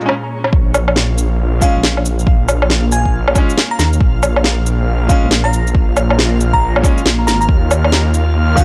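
Ghostly and melancholic, this future garage excerpt rides a swung groove, with a dry, gritty sound recorded to cassette tape. From the start, a bright upright piano with audible action noise plays accompaniment through tape echo and sidechain pumping. Behind it, an ethereal, airy pad of detuned unison sits in the background with chorus, phaser and 12-bit sampler grit, and a reversed, granular texture swells dreamily. Overdriven electronic shaker, woody snare and woodblock, re-recorded in a small room and low-pass filtered, open with a short fill before a deep, layered electronic kick and a menacing saw bass arrive at 0.5 seconds. The evolving bass moves through a filter swell with transformer saturation and sidechain pumping, pushed up front alongside the kick. At 1.6 seconds a bell-like FM electric piano enters with a sparkling, full-bodied melody through chorus, phaser and tape echo, while the harmony moves from Bbm7 through Bb5 to Ebm7 near the close.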